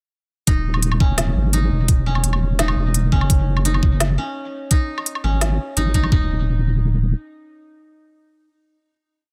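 This short, tense and cinematic half-time drum and bass piece runs at 170 BPM in 4/4, set in Eb phrygian, with a single drop from 0.5 to 6.1 seconds. A deep, dark wobble bass holds long, sustained notes up front, its triangle-and-sine tone compressed and thickened with chorus. Two electronic kits share the half-time beat: one layered with a knocking kick and floor tom, the other sparse, with a woody snare, crisp closed hats and a low woodblock, tape-warm and re-recorded in a large room. Over this, a dry koto played with fingerpicks repeats a six-step arpeggio loop that drifts against the bar, a dub echo trailing behind it. The harmony moves from Eb7sus4 through Dbmadd11/Fb, Gb5 and Ab5, and once the chords fall silent the parts thin out until the koto's final note rings to 8.5 seconds within a digital ambience.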